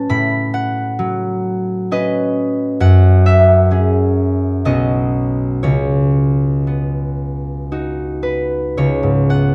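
This is a classical solo harp piece, dreamy and peaceful, moving in a gentle 3/4 with a free, rubato feel. A single concert harp carries everything from 0.0 to 9.5 seconds, fingerpicked across a span from B1 up to B5, its strings bright and ringing as they sit up front in the sound. The harmony drifts through lush extended chords, starting on A69 and passing through F#m9, Badd9 and C#9sus4 before settling on a C#7 voicing at 8.8 seconds. Light reverb gives the harp's tone a soft halo, while the overall production leans dark and warm. Cut from a longer work, the passage feels like a brief, suspended moment of calm.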